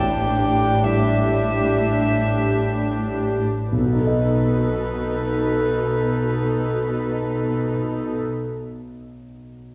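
In free time that slows over the opening 3.7 seconds, this cut from a sorrowful, bittersweet cinematic orchestral score sets a solo violin's airy, lightly vibrato melody over a dark, floating viola section. A lush cello section holds the bass beneath, and a concert grand piano with deep, long-sustaining bass accompanies, moving from an A7sus4 chord to B7 at 3.7 seconds. The strings stop at 8.2 seconds while the piano rings on to 9.7, all set back in the wet reverb of a scoring stage.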